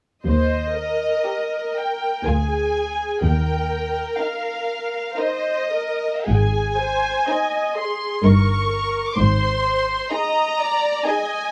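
Serene and warm, this slow romantic movement for string orchestra moves in 3/4 at 61 BPM in Eb major, with rubato giving its beats an uneven, breathing feel. A dark, woody violin section carries the melody up front while a rich second violin line joins at 1.3 s, a smooth viola section fills the middle, and expressive cellos and double basses, the cellos lush, anchor the bass until 9.9 s, all bowed with vibrato. Light reverb and close, detailed microphones frame this short excerpt, which drifts through Eb, Bb7/D and Ab harmonies.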